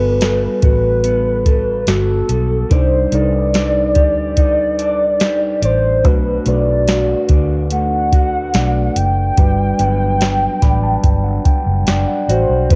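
Dreamy and sunny, this short indie pop and bedroom pop passage, cut from a longer piece, moves at an unhurried 72 BPM in 4/4 with a straight feel in G major. A warbling, detuned lead voice carries the melody with a soft attack, long sustained notes, vibrato and a lush chorus, its blend of triangle and sawtooth tones giving it a nostalgic glow. Underneath, an electric guitar through a small old amp sounds dark and slightly broken-up, its picked lo-fi tone colored by subtle chorus and a wavering pitch drift. A mellow, clean tine electric piano fills out the harmony and adds a fill from 10.2 to 12.7 seconds, while a round, foam-muted fingered electric bass sits up front. A dry analog rhythm box enters at 0.2 seconds with a deep kick, crisp snare and metallic hi-hats, and the Gmaj9, Cmadd9, Bm7 and Gmaj7 changes drift by in a home cassette recording with light reverb and a tape-warm haze.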